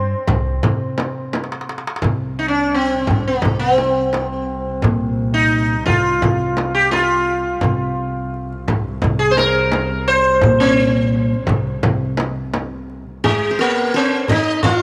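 A straight 4/4 pulse from a crisp, metal-shelled darbuka and a frame drum, both struck with hard hands in a small room, carries this soulful, longing Arabic maqam ensemble piece, with a short drum fill at 1.3 seconds. Up front, a buzzing, shimmering sitar with tape echo sings the melody over a woody pizzicato upright bass, while a bright-edged qanun plays a second line at the opening and returns at 13.2 seconds. From 2.1 seconds, a focused, bowed double bass holds a low drone with vibrato, and a moderate plate reverb lends the ensemble a sense of space.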